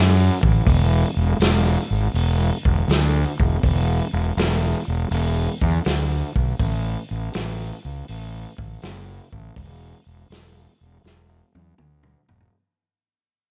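A lightly reverberant sound frames this gritty, raunchy excerpt of blues rock and southern rock, with a swung power-trio feel that fades out across its whole length. A growly, overdriven fuzz bass sits up front from the opening, joined at 0.4 s by a natural, small-room vintage drum kit with a tight kick, medium-tuned snare, hi-hat and a rolled-off top. A drum fill closes the clip from 11.0 s.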